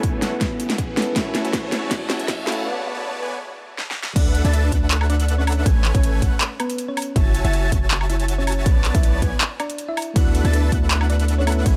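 Riding a half-time 160 BPM pulse with a light swing, this bittersweet future bass excerpt builds over its first 4.2 seconds as a pumping, filter-swept supersaw riff, a bright tine electric piano with dub echo, a shimmering ambient pad, softly ringing concert harp arpeggios, a background riser and punchy drum fills with a huge snare and metallic hats lead into a brief break. The track then drops at 4.2 seconds into a lush, emotional groove where a boomy 808-style bass, a round, tine-like pluck melody with cassette-tape colour and delay, and an airy, dreamy high lead arpeggio join the kick and kit over Amaj9, F#m9, Bm9 and D69 chords.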